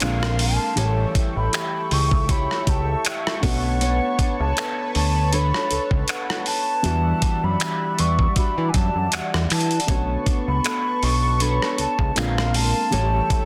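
A dusty soul sampler-style drum kit sets a lightly swung 79 BPM groove in 4/4, its finger snaps, hi-hat, rim clicks and thumpy kick sitting gritty and up front, with soft clipping on the snare and the sound of having been re-recorded in a large room. This moody, sensual contemporary R&B fragment in B minor is anchored by a fat, detuned analog bass blending sawtooth and square tones, with a plucky filter and moving notch, until 13.2 seconds. Above it, a mellow, hollow silver concert flute carries the melody with a pure straight tone, crisp attack and rolled-off highs, touched with delay. A dark, intimate baby grand piano with audible action noise stays in the background, while a fingerpicked nylon-string guitar adds classical arpeggios and a smooth, bright analog pad holds sustained chords with chorus and sidechain pumping. The harmony moves through A#9, A7, Bm9 and Em9, a very quiet electronic downlifter sounds across the opening 3.8 seconds, and the whole is dry, dense and heavily limited in a modern master.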